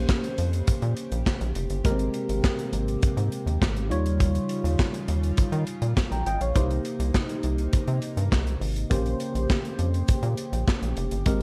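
Early-eighties boogie funk in Bb dorian at 102 BPM, this funky, late-night excerpt rides a rubbery, hollow square bass and a punchy, up-front studio drum kit with handclaps, hi-hat, medium-tuned snare and gated reverb beneath a worn, slightly out-of-tune tine electric piano through overdrive and phaser and a shimmering, chorused pulse-width pad, moving through Bbm69, Abmaj9, Eb9 and Cm7 with lossy compression artefacts in the studio ambience.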